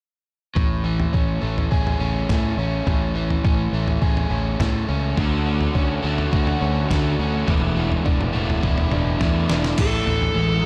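A straight 4/4 groove from a gritty, sampler-style soul drum kit with a thumpy kick and fat snare drives this upbeat, jangly indie rock clip, entering together with a growling, overdriven fingered bass and an up-front, picked guitar riff coated in tape echo over Amaj7, Dmaj7 and E7sus4. At 5.2 s a darker, crunchy second guitar adds its own riff through analog chorus and tape echo, and after a drum fill a compressed fuzz lead guitar breaks in at 9.8 s as the chords land on Amaj7(no3). The echo-heavy mix sits in light reverb and digital ambience.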